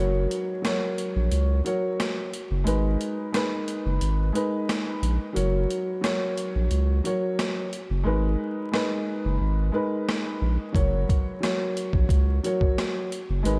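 Boom-bap hip-hop at 89 BPM with a swung 16th-note feel and a reflective yet tough mood, built on a dark, mellow, boxy grand piano with a cassette-tape color, alternating between F# and G#madd9 over a deep, thick, saturated sine sub bass. A gritty, pitched-down sampler-style kit with a thumpy kick, high-tuned snare, rim clicks and hi-hats enters at 0.3 seconds, and the hi-hats drop out from 8.1 to 10.7 seconds. The dreamy mix is soaked in cathedral reverb and vinyl crackle.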